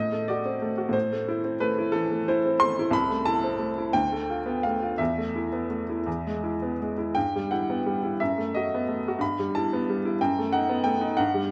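Stormy and brooding, this romantic character piece for solo piano moves in a rubato 6/8 at roughly 54-62 BPM, opening in A minor on a tense D7b9 over A before settling through Am, Bm7b5 and a suspended E that resolves to E major. At 7.2 s the music turns to E minor, rocking between Em/G and B7/F# as it broods. The upright piano sounds brilliant, woody and intimate, placed up front with audible action noise and spanning C2 to C6, all within a moderate concert hall reverb, in this short passage cut from a longer piece.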